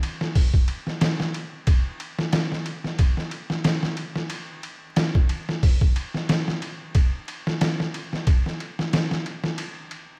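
Wrapped in vinyl crackle and light reverb, this brooding, hypnotic trip hop fragment, cut from a longer piece, sets a lone sampler-style drum kit up front at 91 BPM with a slight 16th-note swing, its compressed, pitched-down, overdriven sound in a small room turning gritty, with a thumpy kick, a medium-tuned snare, hi-hat and ride cymbal carrying the groove from 0.0 to 10.1 seconds.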